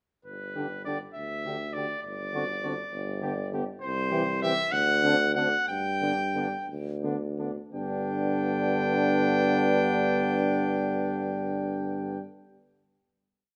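Stately and warm, this complete piece for brass quintet unfolds in a slow, rubato 6/8 in G major, at around 56-68 BPM counted in dotted quarters. The bright trumpet sings the melody up front from 0.3 seconds, while the clear tuba, colored by light vibrato and a vintage tinge, anchors it with bass on the beats and sustained low notes. From 0.6 seconds a punchy, roomy flugelhorn adds a second line, and the mellow French horn and the euphonium, also with a touch of vibrato, sit in the background with after-beat and sustained chords. The harmony moves from G through D7 over G, C and D7 before returning home, with the tempo gradually slowing from about 2.9 seconds until the quintet settles onto a final chord at 7.7 seconds. Close, detailed microphones capture the players within a recital hall's moderate reverb.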